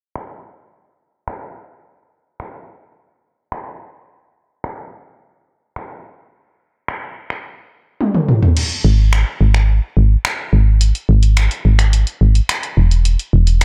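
This dance-pop excerpt has a driving, bittersweet mood, built on a punchy analog drum machine with finger snaps, hi-hat, toms and crash cymbal that sits up front and sounds as if re-recorded in a large room. After a drum fill from 8.0 to 8.6 seconds, a solid FM bass enters at 8.8 seconds with a round, digital tone, fast attack and decaying low notes. The dry mix has a dark, warm, low-pass-filtered character.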